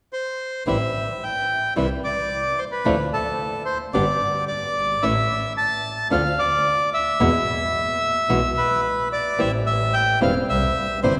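Sultry and dramatic, this tango excerpt in A minor moves at 110 BPM with a rubato feel, as a reedy, full bandoneon carries the melody up front from 0.1 s. At 0.7 s a bright, fingerpicked flamenco guitar enters with audible finger squeak, alongside a single bowed double bass whose biting, nasal tone carries light vibrato and an earthy, airy edge. The harmony moves from Am7 through Dm to E before a new section opens at 9.4 s, all set in the long, wet reverb of a church or concert hall.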